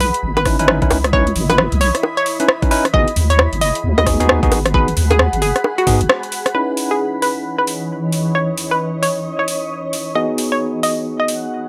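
Swung sixteenths give this two-step UK garage piece a skippy, soulful bounce. An overdriven garage kit of bongos, metallic hi-hats and rim clicks sits up front, and a knocking electronic kick joins at 0.5 seconds. A deep, wobbling bass with a dark, compressed tone and chorus anchors the low end until 6.1 seconds, when a short break and a band accent mark the turn into the second section; the kick has already stopped just before. A hollow, bouncy square-wave pluck carries the melody with chorus and analog delay, while a bell-like tine electric piano plays clean, bright stabs through a low-pass filter and delay, with a filter sweep across the first section. Beneath them, a cloudy granular pad evolves, blurred and mellow in its own reverb, pumping with sidechain. The harmony moves between minor ninth and minor seventh chords, with a dry, gritty hardware sound and light reverb, in a passage taken from a longer piece.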